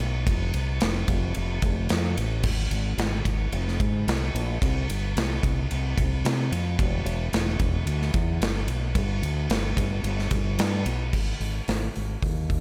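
A growling, overdriven fingered electric bass sits up front from the first moment of this hazy, blissful shoegaze and dream pop rock excerpt, moving at 110 BPM in a straight 4/4 and tuned slightly sharp to A4 = 441 Hz. A big acoustic rock drum kit joins at 0.3 seconds, with a punchy kick, a medium-tuned snare, hi-hat, ride and crash sitting up front in a studio room. Light reverb softens the pair, and the music shifts into a new section at 11.1 seconds before the cut.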